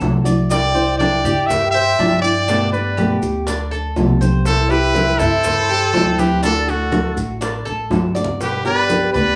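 A relaxed Cuban son in the guajira style at 122 BPM in G major opens with fingerpicked nylon-string guitar, picked tres arpeggios with a metallic double-string ring, and woody, growly pizzicato upright bass, over background congas, tight high-tuned bongos and grainy maracas. At 0.5 s a brilliant trumpet takes the melody up front with vibrato and scooped notes, while a breathy, reedy jazz flute with a crisp chiff carries a second line behind it as the chords move through Cadd9, Gadd9, C and D. A drum fill at 7.9 s leads toward G at 8.4 s, all played live in a small room with wet studio reverb.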